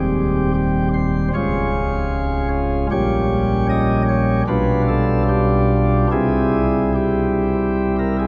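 The recording sits in a wet cathedral acoustic, with a reverb tail of about 6.2 seconds that lets each chord hang in the air long after it is sounded. This is a short classical excerpt, a chorale-style passage for solo pipe organ, cut from a longer piece and lasting about 8.3 seconds. The organ speaks through sparkling flute stops with a light, baroque voicing, placed up front, and its range reaches from a deep Db1 up to Eb5. The mood is solemn and dark, moving at roughly 71 to 78 BPM in 4/4 with a rubato feel, tuned slightly below standard pitch at A4 = 439 Hz. The harmony travels from C minor over Eb through Db and a diminished chord before a G7 over B resolves onto a C major chord at 6.1 seconds.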